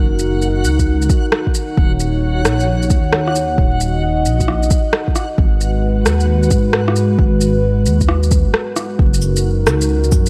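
A moody, chorused analog pad with sidechain pumping and a rumbling, saturated, detuned saw bass open this rainy, melancholic future garage excerpt beneath vinyl crackle and a dreamy reversed granular texture, with electronic shaker, rim click and cabasa arriving at 0.2 seconds and a deep, up-front kick at 0.8 seconds, both overdriven, riding a swung groove over Gb6, Ebm7 and Abm7 chords before a brief break at 8.5 seconds.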